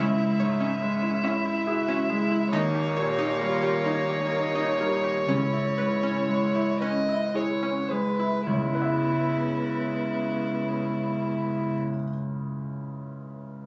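Neoclassical piano and strings in C# minor, longing and reflective, drifting in a rubato 6/8 at 35-48 BPM and slowing from 1.2 to 8.5 seconds, where an up-front dark violin sings a soft-attack sul tasto melody with light vibrato over a clear, woody upright piano with audible action noise, a distant, floating cello line, a background viola with airy bow, and a round, detuned sawtooth analog pluck with chorus and tape echo that plays arpeggios until 8.4 seconds, before the piano rings on alone to 13.7 seconds in an intimate booth ambience captured on a phone in the room with a dulled top end.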